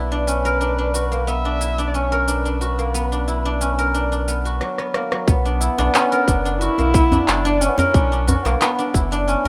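A rough home demo sound with light reverb and a studio ambience frames this meditative, warm piece of organic downtempo at 90 BPM in B minor, cut from a longer work and resting on a Bm chord with a gentle 16th-note swing. A dark, intimate bowed kamancheh carries the melody with vibrato and portamento over silvery, ringing guzheng arpeggios played with fingerpicks and treated with digital delay, while a round sine sub bass sits up front and tape-warm electronic cabasa, rim click and handclaps tick along from 0.3 seconds. After a drum fill, a tight electronic kick arrives at 5.3 seconds and a deep, dry djembe joins at 5.8 seconds.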